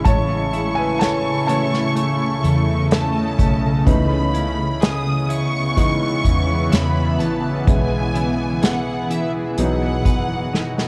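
Tender, heartfelt pop ballad at 63 BPM in 4/4, where an intimate concert grand piano takes the lead with audible action noise and deep bass over chords moving from A to E/B to B. An evolving, blurred granular pad with built-in reverb sits up front, joined by clean, compressed electric guitar arpeggios with tape echo in the background, a dark, round foam-muted electric bass and a lush, bowed violin section with vibrato and tape echo carrying a high second line. An airy acoustic kit played with bundle sticks adds a punchy kick and hi-hat, ending on a drum fill at 10.5 seconds, all captured as a small-room home recording on cassette.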